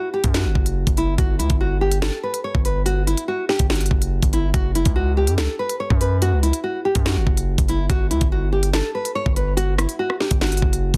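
Dark and cold, this half-time drill hip hop excerpt opens with a fingerpicked, classical-sounding nylon-string guitar melody, joined at 0.2 seconds by a heavy, saturated 808-style bass with a noise layer and an electronic drill kit of knocking kick, sharp snare, rim clicks and crisp hi-hats, all set up front in a dry, dense, heavily limited modern mix.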